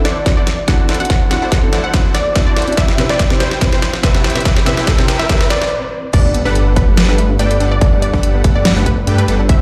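A punchy, overdriven electronic kick drives this playful, lush future bass excerpt at 143 BPM in a half-time feel, where a dark, mellow grand piano with audible action noise, a very quiet shimmering pad, detuned supersaw stabs, a unison pluck melody with tape echo, a faint riser and impact, and a dubstep kit with a deep snare carry a build-up over D9 and Cmaj7 that halts briefly at 5.7 s before the drop at 6.1 s brings in a thick, chorused detuned saw bass and soft background pluck arpeggios with cassette-tape grit over Gmaj9, with the piano, stabs, plucks and bass pumping against the kick in a large reverberant room.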